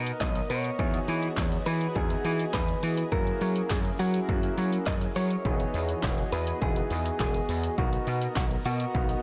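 Euphoric and summery, this short dance-pop excerpt moves in a straight 4/4 over lush major-seventh harmony, drifting from Bmaj7 through Emaj7 and F#7 before settling back on Bmaj7. A gritty slap bass sits up front, bright and overdriven with a punchy, amped edge, while a punchy analog drum machine drives things with handclaps, hi-hat, kick and snare, its snare, clap and hats carrying a short room sound. Behind them, a soft supersaw holds smooth, airy, detuned chords with a soft attack and a moving notch, and a clear, polished baby grand piano adds accompaniment in the background, both breathing with sidechain pumping. From 0.2 seconds a clean, direct-recorded electric guitar carries the melody, its compressed, picked notes colored by a warbly pitch drift and delay. The whole mix is blown-out and overdriven under light reverb, giving the sunny mood a saturated, crunchy sheen.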